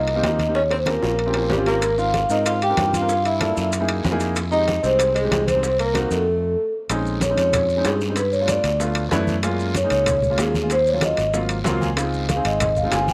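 Sultry yet driving, this short cut from a longer Afro-Cuban jazz piece runs at a brisk straight four, with a metallic, ringing vibraphone carrying the melody in a boxy small room, its motor off. A breathy, mellow tenor saxophone with light vibrato and scooped notes sits distant behind it as a second line, dropping out at 6.7 seconds during a brief stop. A woody upright piano fills in the accompaniment and adds a short fill near 11.5 seconds, while a fingered electric bass, direct and amped, anchors the low end. The percussion bed is dense: low-tuned, thick-skinned congas and tight, high-tuned vintage bongos under soft hands, ringing metal-shell timbales, a raspy guiro, and grainy maracas that join at 1.8 seconds. A drum fill early on launches the groove, and the harmony moves through rich extended chords before shifting to a second section in B-flat minor at 6.9 seconds, all under a light reverb.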